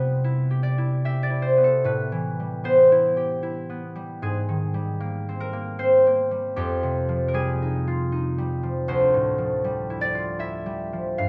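This classical solo harp piece, cut from a longer work, has a graceful and peaceful mood. It moves in triple metre, with uneven beats and a rubato feel that lets the phrases breathe freely. The concert harp plays alone for the full 11.3 seconds, its mellow, ringing tone sitting up front and ranging from D2 down low to F5 above. The fingerpicked lines drift through rich extended chords, from Cmaj9 at the start through Am9, Abmaj9 and Fm9 before settling on Dm11 at 8.9 seconds. A moderate recital hall reverb gives each note a gentle sense of space.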